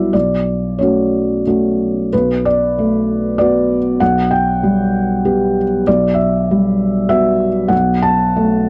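A close, dry recording with a 1970s studio character and a light reverb opens on a felt-muted upright piano, heard up front with thick felt and audible action noise that give it a dark, intimate tone. This short cut from a longer neoclassical minimalist piece is wistful and intimate, a solo in B minor and 3/4 at roughly 89-98 BPM, played with rubato across a range from B1 to A5. A new section arrives at 2.1 seconds, moving through Bm7, G/B and Emadd9/B over B in the bass before settling back on F#m/B at 7.7 seconds.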